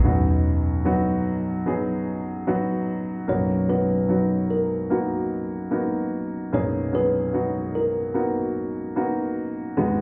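A clear, up-front grand piano opens this emotional, hopeful pop excerpt at 74 BPM in B major, laying down accompaniment on a B chord. At 3.3 seconds the harmony shifts to Bmaj7 and a woody, mellow kalimba enters with a soft fingertip-plucked melody that carries a boxy, small-room character. The whole mix sits in a moderate plate reverb and sounds muffled, as if heard through a wall in a club.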